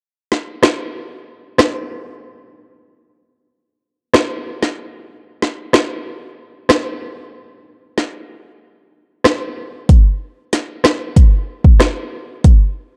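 An up-front electronic afro-pop drum kit, with a deep kick, woody snare, rim clicks and metallic hi-hats, drives this sultry, tough dancehall excerpt at 94 BPM in a straight 4/4, entering at 0.3 seconds, dropping the kick from 8.6 to 9.9 seconds before a new section, and playing until 12.6 seconds in a dark production with light reverb.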